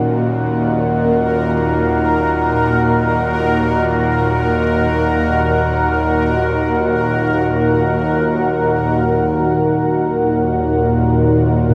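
This ominous dark ambient drone in E-flat minor opens at once on three layers, moving in free time and tuned slightly sharp to A4 = 441 Hz. Up front, a bowed-like drone sits low with a tense, string-like sawtooth edge, thickened by detuned unison voices, a noise layer, vibrato and its own reverb. Alongside it, a sweeping resonant pad holds sustained chords that evolve with a filter swell, full-bodied thanks to a sub octave and chorus. Between them in register, very quiet gamelan-type bossed gongs play soft, mellow arpeggios, their bronze tone round and gently beating. At 1.0 seconds a bright, bubbling texture fades in on a single high note, its random filter steps adding a restless resonant shimmer until it stops at 9.0 seconds. The whole echo-heavy mix is bathed in a wet spring reverb with a 2.7-second decay, giving this vast fragment of a longer piece its cavernous depth.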